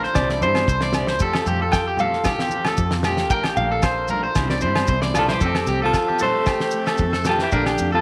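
A danceable highlife guitar band groove in F major at 114 BPM opens with a twangy, slightly broken-up electric guitar up front playing arpeggios. A darker broken-up guitar plays picked accompaniment in the background, a round, foam-muted fingered bass holds the low end, and a very quiet, reedy accordion sustains chords until 5.4 seconds. A dry 70s drum kit with a fat snare and tight kick drives the straight 4/4 feel. Ringing agogo bells, grainy maracas and low-tuned, distant congas fill out the percussion. A clean, picked electric guitar carries the melody as a solo over chords such as Cadd9, Fadd9 and Bbmaj7, leading to a drum fill. At 5.2 seconds a raspy, gritty tenor saxophone with scooped notes and vibrato slips in underneath with a second line, all set in a moderate plate reverb with studio ambience, in this excerpt from a longer piece.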